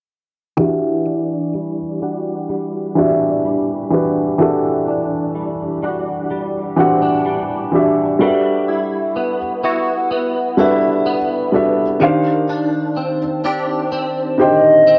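In a straight 4/4 at a slow 63 BPM, this tender, romantic R&B passage, cut from a longer piece, drifts through Em9, Gmaj13 and Ebmaj13, with a filter sweep running across it. A dark, intimate baby grand with audible action noise and short sustain plays the accompaniment up front, beside twangy, compressed arpeggios from a bright, direct-recorded clean electric guitar treated with ensemble chorus, low-pass filtering and analog delay. At 14.4 s a smooth, gliding portamento lead with vibrato and chorus touches a sustained Eb5, all captured as a home cassette recording in a moderate studio ambience.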